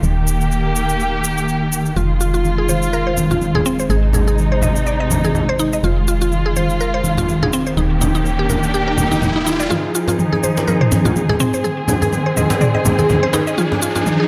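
A swung 124 BPM groove in 4/4 drives this afro house excerpt in F minor, built on layered electronic cabasa and toms set in studio reverb, with low-tuned, thick-skinned congas arriving at 2.5 seconds from a distant, large-room space. The mood is spiritual and driving, anchored by a dark chamber string section that holds sustained, expressive bowed chords with vibrato and a smooth, filtered top, sitting up front throughout. A soft, round FM bass with a woody, decaying tone plays low beneath the strings until 9.7 seconds, while from 2.0 seconds a mallet-like synth pluck spins bright, percussive arpeggios coloured by chorus and dub echo. The harmony cycles through Eb, Fm7 and Ab. An electronic riser enters in the background at 7.4 seconds, and at 9.7 seconds the music moves into a build-up with a drum fill. A deep djembe with metal rattles and hard-handed playing joins in a live room as the riser climbs toward the cut-off.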